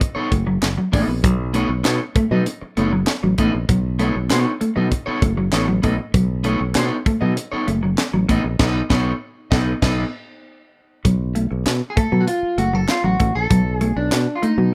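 Opening on a B9 chord in B mixolydian, a slightly broken-up, scooped electric guitar with plate reverb and a dark, clean electric guitar riff through phaser start together with an up-front funk drum kit of high-tuned snare, tight kick, hi-hat, crash cymbal and handclaps, joined at 0.2 s by a growly, punchy fingered bass, driving this energetic 98 BPM funk passage in a wet studio ambience through a band accent at 8.6 s before the clean guitar takes a solo over B7(no3) from 11.1 s, all in a rough home demo mix.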